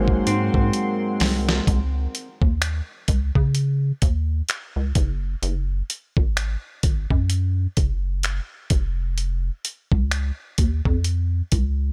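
Heard in a digital ambience, this romantic, tender contemporary R&B excerpt in Db major at 64 BPM swings on 16ths as a clear, intimate grand piano with audible action noise and a shimmering, retro chorused pulse-width pad open alongside a twangy, clean electric guitar with spring reverb and delay. A drum fill leads the piano and pad out at 1.7 seconds and the guitar follows at 2.3 seconds, leaving a rubbery, hollow square bass and a gritty, compressed soul sampler-style drum kit with thumpy kick, fat snare, hi-hat and finger snaps up front over chords moving from Dbsus2 to Gbsus2 and Db/F.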